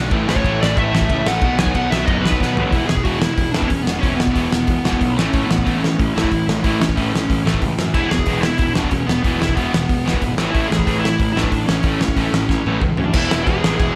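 Rowdy and upbeat, this punk rock excerpt charges along in a straight 4/4, cut from a longer piece and full of small-room energy. A loose indie drum kit sits up front, its punchy kick, fat snare and dark cymbals driving the whole thing with a pumping room sound, and it fires off fills at 2.4 and 12.5 seconds. Beneath it, three rhythm guitars grind out riffs: a bright, crunchy overdriven part in the background, a very quiet bright distorted one, and a very quiet, double-tracked sludgy guitar with a warm tone. A growly fuzz bass, picked and overdriven, rumbles low in the background. Over the top, a dark, high-gain lead guitar carries the melody from 0.3 seconds onward. The chords move between A, B and E under light reverb, and after a short opening passage the music shifts into a longer section at 2.7 seconds.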